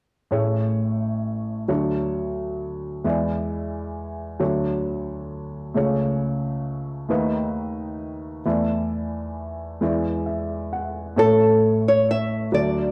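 Intimate and hopeful, this short cut from a longer acoustic folk-pop ballad moves at an unhurried 44 BPM in a straight 6/8, settled in A major. An upright piano carries the accompaniment from 0.3 seconds, its woody, natural tone sitting up front with short sustain and audible action noise, stepping through seventh chords such as Amaj7, Dmaj7 and E7 before resolving toward E7sus4 and E7. At 11.2 seconds a nylon-string guitar enters with the melody, a small, fingerpicked voice placed close and slightly louder than the piano, as the harmony lands on a plain A chord. Both parts carry a cassette-tape colouring, and a wet spring reverb with studio ambience surrounds them, giving the home recording a cosy, lived-in feel.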